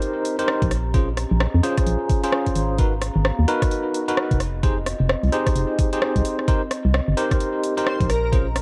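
An up-front, hollow organ-like FM bass enters at 0.6 s alongside a knocking, overdriven kick in this bouncy, skippy two-step UK garage cut at 130 BPM in C phrygian, while bright bell-like tine electric piano stabs with tape echo, metallic hats and rim clicks from a garage kit, and a warbling, nostalgic, lo-fi pad with sidechain pumping in the background move through Cm7, Bbm7, Abm7 and Fm7, before an airy, dreamy lead slips in at 7.9 s, the whole captured with light reverb as a home cassette recording.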